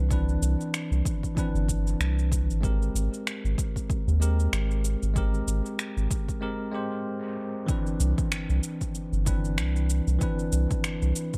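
Sunset chillout with a smooth, warm mood and a gently swung sixteenth-note feel, cut from a longer piece. A bell-like tine electric piano, clean and bright under dub echo, moves from Cmaj9 to Abmaj9 over a round, deep analog bass that sits up front, while an overdriven electronic kick with a punchy edge and layered electronic cabasa and finger snaps fill out the groove. A break arrives at 6.4 seconds before the return to Cmaj9 at 7.7 seconds, the whole mix wrapped in light reverb and echo-heavy digital ambience.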